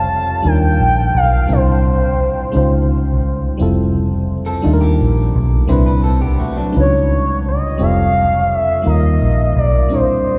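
A cavernous cathedral reverb with a long 6.6-second tail surrounds this slow six-eight R&B fragment, cut from a longer piece, and its muffled top end keeps the sound soft and hazy. At 57 BPM the mood is tender and sensual, with an FM electric piano laying down glassy, bell-like chords that bloom and decay through a gentle chorus, moving through lush ninth chords such as Ebmaj9, Dbmaj9 and Fmaj9. Underneath, a vintage foam-muted fingered electric bass sits up front, dark and round, anchoring the low register. The melody comes from a smooth, detuned sawtooth-and-sine synth lead with soft attack, vibrato and portamento glides, singing from the opening until 2.9 seconds and returning at 6.8 seconds. In the gap, a picked electric guitar at the edge of break-up enters at 4.5 seconds as a quiet, slightly gritty second line.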